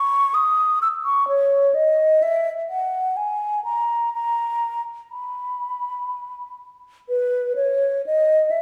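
Bathed in the wet reverb of a church or concert hall, this brief fragment of a serene, flowing baroque-style fantasia in B major, at 63 BPM in a rubato 3/4, features a lone concert flute placed up front, its airy, hollow tone carrying vibrato and tongued notes from B4 to E6 across 8.6 seconds, with a new section arriving at 7.1 seconds.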